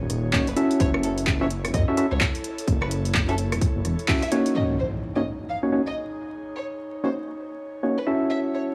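Soulful and moody, this fragment of a longer two-step UK garage track rides a swung groove in 4/4. A deep, rumbling detuned saw bass sits up front with tube saturation, joined by an overdriven, punchy kick re-recorded in a large room and an analog drum machine of claves, handclaps, hi-hat and rim click. A hollow, organ-like stab with chorus and analog delay punctuates the minor seventh chords, while an airy, breathy pad with chorus and sidechain pumping sits quietly beneath it, and a chamber violin section plays a soft-attack, sul tasto line with light vibrato and analog delay. Around a band accent at 4.1 seconds the bass and drums drop away, and an electronic impact lands at 4.6 seconds. From there the organ stab moves through a filter sweep as the pad and violins carry on. The sound is dry and gritty, with vinyl crackle, small room ambience and light reverb.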